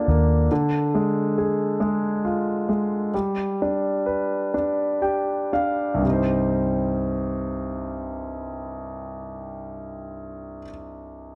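Set in a small room with a moderate echo-chamber reverb, this dramatic, aching excerpt of a six-eight pop ballad in C minor moves at 38-47 BPM and slows from 0.5 to 6.0 seconds. A clear, polished concert grand piano carries the accompaniment up front, intimate enough to reveal its action noise, with deep bass and long sustain. A dark, round, foam-muted vintage electric bass sounds only briefly at the start. The harmony moves from Bb through Ddim and G, and the piano plays a fill from 4.5 to 6.0 seconds before the harmony settles on Cm at 6.0 seconds.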